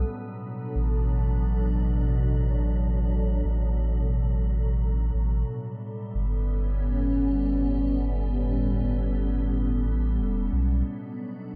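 A lightly swung 16th-note feel at 89 BPM in 4/4 carries this spacious, deep ambient dub fragment in B minor, where a round, mellow sine sub bass sits up front beside a soft, dark, organ-like additive pad of slow-attack, detuned sustained chords with ensemble chorus and its own reverb, moving from Bm7 to A7 and back to Bm7 before the bass stops at 10.8 seconds and the pad holds on to 11.6 seconds, in a lightly reverberant mix with nothing above 7.8 kHz.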